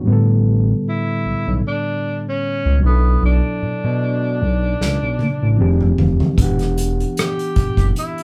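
A gritty, overdriven reed electric piano opens this late-night, introspective neo-soul R&B excerpt at 76 BPM in E dorian, joined almost at once by a smooth, gliding sawtooth synth bass up front, then at 0.9 seconds by a breathy, whispered tenor saxophone melody with vibrato and scooped notes, before an acoustic drum kit played with bundle sticks arrives at 4.8 seconds with a fill, the band sounding live in one room with light reverb as the chords move from A7sus4 through Bm11 and Fm9 to Em9.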